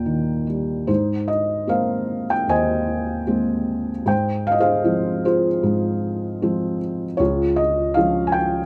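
The rhythm moves in an unhurried 4/4 at about 76 BPM, stretched and relaxed by a free, rubato feel. This short cut from a longer piece is lyrical solo classical piano in Ab major, calm and tender in mood. A felt-muted upright piano plays alone for the full 8.7 seconds, spanning Db2 up to Ab5, its tone soft, mellow and intimate, with the thick felt giving each note a hushed, natural quality. The harmony opens on Eb, settles onto Abadd9 at 0.9 seconds, moves to Fm/Ab and then arrives at Db at 7.2 seconds. The piano sits up front in a dark production touched by light reverb, lending the passage a close, private character.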